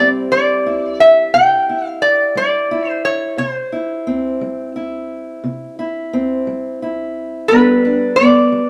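A metal-body resonator slide guitar and a fingerpicked steel-string acoustic guitar open together in this short cut of acoustic country blues, moving at a slow 59 beats per minute in a straight 12/8 with a soulful, swaggering mood. The resonator carries the melody with a bright, nasal, metallic slide tone from fingerpicks, set in plate reverb. The parlour-style acoustic gives a dark, woody accompaniment from old strings, resting on C before shifting to G at 7.5 seconds, all heard from further back in a small, ambient room.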